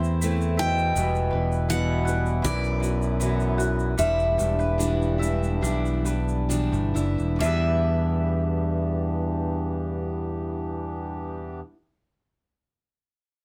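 A straight 4/4 pulse, moving between 64 and 82 BPM, slows through the opening section of this reflective, intimate acoustic folk fragment in E minor. A punchy, growly electric bass sits up front beneath a jumbo steel-string guitar picking full-bodied accompaniment. A reedy, breathing harmonium holds nasal chords, and a bowl-back mandolin plays double-string arpeggios in the background. A grainy tube shaker adds texture until 7.9 seconds, and from 0.6 seconds a second steel-string guitar carries the high melody, finger squeak audible, alongside a clear, distant French horn playing a low second line with a soft attack. The chords pass from Am to Emadd9 and Em7, and a new section begins at 7.4 seconds, captured with close, detailed microphones and light reverb.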